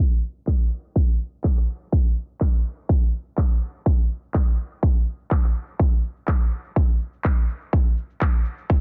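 A punchy, overdriven electronic kick sits up front in this euphoric, hopeful house excerpt at 124 BPM, entering at 0.5 seconds alongside layered, tape-warm electronic handclaps with studio reverb and sidechain pumping on the hats. A grainy, bright tube shaker, close, dry and very quiet, starts at 0.2 seconds. A filter sweep runs through the whole clip, and the dense, heavily limited modern master has a low-pass filter and digital ambience.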